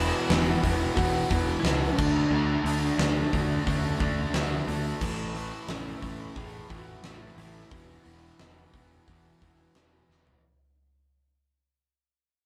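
This hard rock passage, cut from a longer piece, opens on a powerful, energetic chord pattern of E5, D and A before returning to E5, in a straight 4/4 at 89 BPM. Two crunchy overdriven electric guitars play the riff from the start, one very quiet and the other bright. Beneath them, a fuzz-laden electric bass sits up front with a dark, round tone. Very quietly in the background, a small flute group holds airy sustained chords with vibrato and rolled-off highs. At 0.3 seconds, a huge arena drum kit comes in with a fat snare, a punchy kick, crashes, hi-hat and toms, and a slightly broken-up, compressed lead guitar with slapback echo begins its melody. The band sounds as if it is playing live together in one room with moderate reverb, and the whole clip fades out across its length, with a short drum fill arriving at 10.1 seconds.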